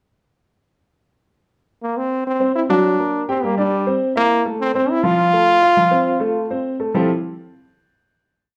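Heard through the wet reverb of a large studio with the band playing live in one room, this lively, sophisticated jazz piece in F major at 205 BPM opens with a brilliant, punchy trombone up front at 1.8 s, playing a forceful, motif-based solo melody of call phrases with light vibrato and scooped notes, joined at 2.4 s by a warm, open baby grand piano whose long-sustained octave montuno carries the harmony to a closing Fmaj9 chord at 6.9 s.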